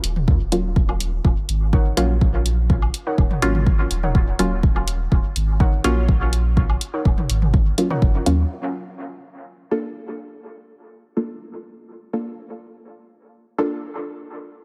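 Deep and nocturnal, this dub techno excerpt moves at 124 BPM in a straight 4/4, built on an up-front electronic kick drum with a deep, tape-warm tone and a re-recorded small-room character, joined by a similarly tape-touched electronic hi-hat. A soft, round sub bass with a sustained triangle and square-wave body sits in front alongside the kick, pumping with the sidechain, while electronic toms and woodblock add layered percussion carried by dub echo. Muted, mellow sawtooth chord stabs with a quick filter pluck and short decay run through chorus, phaser and dub echo, shifting from Ebm7 to Bbmaj7 at 8.5 seconds. From 1.7 seconds a warbling, nasal, lo-fi pluck riff drifts in with chorus, a filter sweep and its own echo trails. The drums, bass and riff drop away near 8.4 seconds, leaving the echoing stabs alone until the cut at 13.8 seconds, all in a dry, echo-heavy mix.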